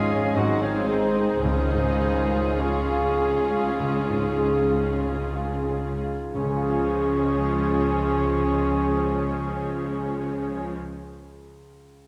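A lyrical, passionate classical passage in Db major opens with a clear concert grand piano carrying the melody over deep bass, joined by veiled, con sordino violins, a mellow cor anglais, an airy silver flute, a soft clarinet, muted violas and a dusky low string foundation of cellos and double basses, all bathed in a wet scoring-stage reverb. The rubato pulse hovers between 43 and 60 BPM and slows through the first 6.3 seconds, while a distant French horn section and a barely audible trombone section sustain chords, a vintage-toned trumpet adds stabs in the background, and softly mallet-struck timpani with calf heads enter at 1.4 seconds. The orchestra falls away by 10.8 seconds, leaving the piano to ring on alone until 12.1 seconds in this fragment cut from a longer piece.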